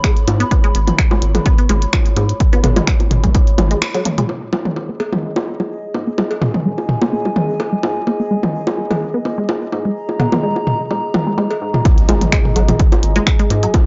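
Clinical and hypnotic, this minimal techno excerpt runs at 127 BPM in G# minor with a light 16th-note swing, built on a juicy, squelchy resonant blip pluck riff drenched in chorus, phaser, tape echo and sidechain pumping, over a rubbery, nasal square bass with tube saturation and a warbling, nostalgic lo-fi pad. A punchy analog kick drops out at 3.4 seconds, and the clicky minimal kit with finger snaps and hi-hat follows after the break from 3.8 to 4.3 seconds, leaving layered electronic cowbell, bongos and toms, a faint pulsing gated texture and a filter sweep on the synth arpeggio sound, before the full drums return at the 11.9-second drop with a very quiet electronic impact. The sound is dry and gritty, a hardware recording with nothing above 7.5 kHz.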